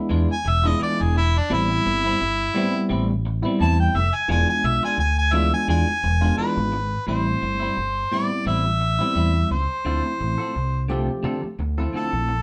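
Blues in A minor at 86 BPM, this smoky, mournful passage is cut from a longer piece and moves with a light sixteenth-note swing in 4/4. A clear, up-front harmonica carries the melody, its tone roughened by overdrive, and takes a solo through the first 7.1 seconds before the harmony shifts. Underneath, a round, amped fingered electric bass anchors the low end, while a bell-like tine electric piano supplies bright, clean accompaniment. A clean electric guitar adds twangy, compressed picked stabs, sitting lower in the mix than the other parts. The chords move from E7b9 to Am7 and back, then settle on Am7 and Dm7 from 7.1 seconds, all captured as a band playing live in one room with moderate studio reverb.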